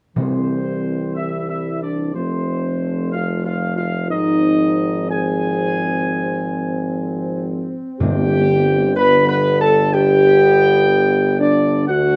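Regal and majestic, this classical brass passage is cut from a longer piece and unfolds at a stately pace in 4/4. A mellow trumpet section carries the melody throughout, while a dark, close-miked French horn section sits prominently in the middle of the texture with sustained chords. A clear trombone section with light vibrato and a punchy edge adds further held chords beneath, and a solo tuba with a vintage tone anchors the bass. Timpani struck with hard mallets give articulate accents at 0.2 seconds and again at 8.0 seconds. The harmony moves from C to F, then to Ab6 and finally G, all set in a moderate large-studio reverb that lends the ensemble a grand sense of space.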